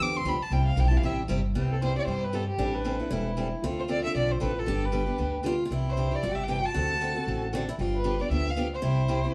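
Playful acoustic string swing in the jazz manouche style, this excerpt moves at a brisk 231 BPM in C major with a light swing. A bowed violin with vibrato, portamento and a smooth top sings the expressive melody up front, while a thumpy, woody pizzicato upright bass on gut strings and a bright parlour guitar with fresh strings carry the accompaniment. A second boxy picked guitar, warm and up front, adds its own line from 1.6 s, all heard from further back in a reverberant studio room as the chords cycle through Cmaj7, Am7, Dm7, D7 and G7 home to C.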